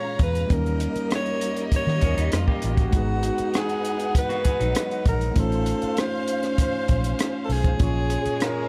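Silky and bittersweet, this short cut of lush 1970s-style soul sets a close-miked, vibrato-rich alto saxophone melody with scooped notes over dark, bowed studio strings, a barky, overdriven tine electric piano, a round, punchy, foam-muted fingered bass and a small-room cocktail drum kit of hi-hat, tight kick and rim click, while a slightly broken-up, lo-fi electric guitar riff appears from 2.0 to 5.3 seconds inside a studio reverb.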